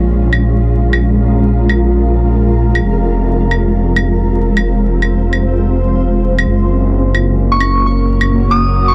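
A menacing, detuned saw bass sits up front and swells with heavy saturation beneath a ghostly, melancholic future garage passage, cut from a longer piece and moving through Bbm7, Fm and Gb chords. A blurred, granular cloud pad sustains slow-attack chords in its own built-in reverb, while layered electronic claves, low-pass filtered and recorded again in a small room, tick quietly in a swung groove from 0.3 s to 8.3 s. At 7.5 s a soft, pure FM bell enters high with a warbling chorus, 12-bit sampler grit and tape echo, all set in light reverb within a dense, heavily limited master dusted with vinyl crackle.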